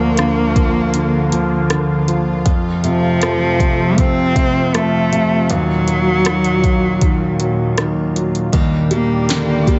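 A hopeful, heartfelt pop ballad at 79 BPM, this short excerpt sets a rich, bowed cello melody with expressive vibrato and portamento up front beside a clear, intimate concert grand piano whose action noise and deep bass are audible, over a smooth electronic R&B drum kit with a soft kick, sharp snare and overdrive, entering at 0.2 seconds. A lush, detuned sawtooth pad with chorus and phaser holds slow-attack chords in the background as the harmony moves from Bb/D through F and Ebmadd9 to Ebmaj7. A full-bodied picked steel-string acoustic guitar, with audible finger squeak, slips in with arpeggios at 8.5 seconds, all within a studio reverb.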